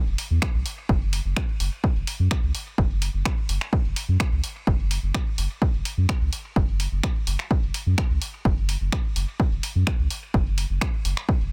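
A pure sine sub bass sits up front in this dub techno excerpt, deep, clean and smooth with a fast attack and sustained, dark notes moving between E1 and F#2, pumping under sidechain compression. Alongside it, an electronic kick drum enters at 0.4 seconds and stays forward in the mix, a punchy analog thump carrying a tape-saturated color and the slight character of being re-recorded in a small room. A quieter analog drum machine, also tape-tinged and room-captured, adds finger snaps and hi-hat, with soft clipping on the snare and dub echo trailing its hits. The pulse runs at a straight 127 BPM in 4/4, and the whole piece stays in one section for roughly 11.5 seconds, cut from a longer track. The sound is dry and close, with little reverb, yet the mood comes across as cavernous and nocturnal, held together by a dense, heavily limited modern master.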